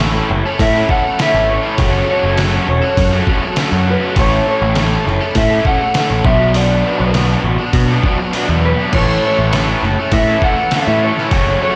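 A straight 4/4 pulse at 101 BPM comes from a compressed, pitched-down, muffled trip hop sampler-style kit with a thumpy kick and medium-tuned snare, whose kick and snare drop out from 8.3 to 8.9 s, under a growling, overdriven picked bass sitting up front in this wistful yet upbeat indie rock excerpt in A major. A dark, slightly broken-up lo-fi guitar through a small old amp carries the melody with chorus, slapback echo and delay, while a bright, cranked stack guitar and a raw, overdriven garage guitar play riffs over chords moving from A through F#m, A6 and Bm. A buzzy vintage combo organ with light vibrato enters in the background at 8.9 s with sustained chords, all heard as a live gig through the venue's PA with club reverb.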